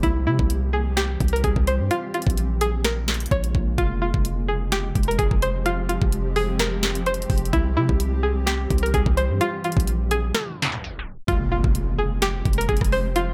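A twangy, string-like resonator pluck carries the melody up front, its bright sawtooth tone colored by chorus, delay and a filter sweep, over a blurred, evolving granular cloud pad that holds mellow sustained chords in F harmonic minor. This melancholic, hard-hitting trap excerpt at 128 BPM in a half-time feel rides on a deep, boomy 808-style bass and a trap kit with a knocking kick, sharp snare, rim click and bright hats, moving through C, Bbm7 and Fmadd9. A break with a tape stop arrives at 10.3 seconds, and an electronic impact sits in the background from 11.3 seconds, all within light reverb and digital ambience.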